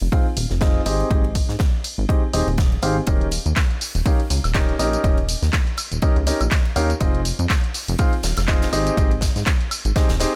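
Euphoric and uplifting, this piano house excerpt moves at 122 BPM in Eb mixolydian with a swung 16th feel, cycling through Fm7, Abmaj7 and Eb7 over a small room ambience. A plucky, funky analog bass with a wave-folded filter pluck sits up front with sidechain pumping beside the dry, punchy electronic kick, while a bright grand piano riff with audible action noise and long sustain carries a low-pass filter, digital delay and its own sidechain pumping. Behind them, an airy gated 80s kit with bright cymbals, hats and a medium-tuned snare in a bright stone room blends with an analog drum machine adding handclaps, hi-hat, tambourine and woodblock from 0.4 seconds.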